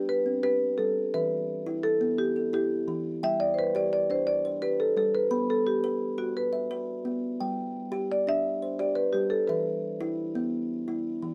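Southern African traditional music in a hypnotic, warm 12/8 at 115 BPM in G major, this short cut from a longer piece sets an up-front marimba played with medium mallets, carrying a mid-forward melody until 10.8 s, over a quieter kalimba whose woody, hollow-box fingertip plucks ring out in mellow arpeggios, all captured dry with close, detailed microphones.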